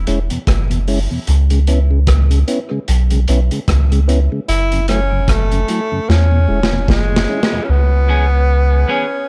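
A small, lightly reverberant room frames this heavy, spacious dub reggae cut at 75 BPM in C# minor, where a deep, round sub bass sits up front beneath a mellow tonewheel organ turning through a slow rotary speaker and a crunchy, saturated breakbeat kit with a punchy kick that closes its run on a drum fill, while a breathy tenor saxophone with scooped notes and dub echo enters at 4.5 seconds and a clean, picked electric guitar, also echoed, appears at 8.1 seconds over the final C#m7.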